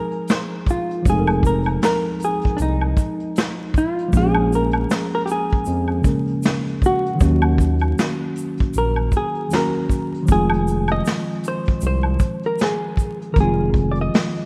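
Through a rough home-demo mix dusted with vinyl crackle and light small-room reverb, this nostalgic, melancholic lo-fi hip hop excerpt in F minor sways at 78 BPM with a 16th-note swing: a dark, clean, picked hollow-body jazz guitar carries the melody up front over a worn, slightly out-of-tune tine electric piano with cassette-tape character, while a vintage brush kit with gritty 12-bit sampler texture, close and dry egg shaker and woodblock, and a smooth gliding sawtooth synth bass entering at 1.1 seconds move through Fm7, Bbm7, Ebm7 and back to Fm7.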